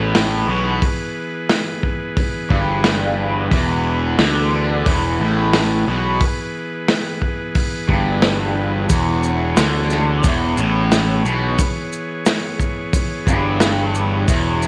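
A cranked stack guitar, overdriven and double-tracked with a phaser, drives a low riff up front over a growly, fuzz-soaked picked bass and a muffled, lo-fi vintage drum kit with a punchy kick, while a reedy combo organ holds sustained chords with light vibrato in the background and grainy maracas join at 8.9 seconds, giving this short psychedelic rock excerpt a trippy, kaleidoscopic feel in a small room.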